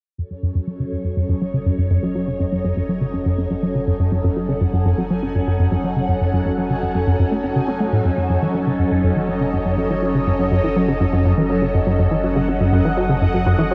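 A punchy, funky analog bass riff sits up front, its wave-folded pluck decaying while a filter sweep runs through it and a tape echo trails behind. This is cosmic, expansive sequencer-driven space music in F# dorian at 122 BPM in a straight 4/4, cut from a longer piece and resting on a single F#m chord. A swirling, vintage string machine holds bright sustained chords through ensemble chorus and phaser, with its own filter sweep shaping the sound. Beneath them, a round sine sub bass fades in on a low F#. From 1.4 seconds a bubbling, resonant texture, also fading in, steps through random filter changes with chorus and its own reverb. The whole passage floats in a huge ambient reverb and carries the worn, warbly pitch drift of old cassette tape.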